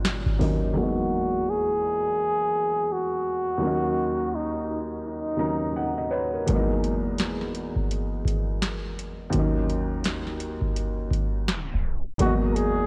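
A breathy flugelhorn carries the melody in this mellow, dreamy lo-fi hip hop excerpt, entering at 0.8 seconds with light vibrato and scooped, jazz-style notes, softened by a low-pass filter and cassette tape. An upright piano accompanies throughout with a woody, intimate tone and audible action noise, shaded by the same tape and filter treatment. A booming analog drum machine, with deep kick, crisp snare and metallic hats roughened by vintage 12-bit sampler grit, is heard only briefly at the start before returning at 6.5 seconds. The relaxed 84 BPM groove in 4/4 swings its sixteenths, moving between Emaj9#11 and D#m7 after an opening rootless Bmaj9/D#. Light reverb and small-room ambience give a home-recorded cassette feel, and a tape stop at 11.5 seconds pulls the music down just before the flugelhorn's brief return.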